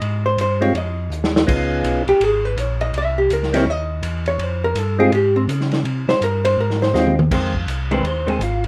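Late-night and smoky, this short soul jazz organ trio piece swings at 164 BPM in F minor, moving through Fm7, Db7 and C7#9. A clean, compressed hollow-body electric guitar takes a picked solo up front from the start, over a round tonewheel organ bass with key click and slow rotary speaker, and a muffled, lo-fi vintage drum kit with dark cymbals that adds brief fills. A lightly overdriven, percussive tonewheel organ carries the melody from 0.6 s with third-harmonic percussion and slow rotary, then takes a solo at 7.3 s, all in a moderate studio ambience.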